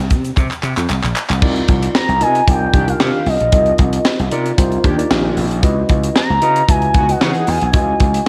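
A tight funk drum kit and a gritty, overdriven slap bass drive this early-eighties boogie funk groove at 114 BPM in a straight 4/4, with a grainy egg shaker sitting in the background at the top and a drum fill from 0.4 to 1.4 seconds leading into the main section. The kit is warm and up front, with a high-tuned snare, a tight kick, handclaps, hi-hat and crash cymbal, its top end rolled off, while the bright, amped bass ranges from Bb1 to Db3. At 1.4 seconds a mellow tine electric piano enters with clean chords through its built-in speakers, touched by slapback echo, as the harmony settles on Cm11 before shifting to Dbm11 at 5.6 seconds. An expressive portamento lead carries the melody from 2.0 seconds, a smooth, warbling, vintage synth voice with resonant, wave-folded tone, vibrato, chorus and slapback echo, while a fat, brassy analog synth brass line with a filter sweep sits darker in the background underneath. 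The hall reverb gives the whole a lush, big arena sound, and this short cut from a longer piece carries a funky, late-night mood.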